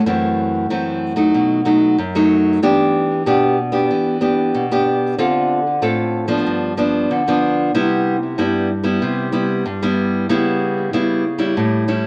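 Playful and lively, this short samba excerpt features a lone nylon-string guitar, fingerpicked with fresh strings and audible finger squeak, sitting small and up front with a touch of tape echo. The chords move from F#m7b5 through B7 and Em7, then Dm7, G7 and Cmaj7, arriving at C#m7b5 at 10.3 seconds. Moderate studio reverb surrounds the guitar in a dark, warm production.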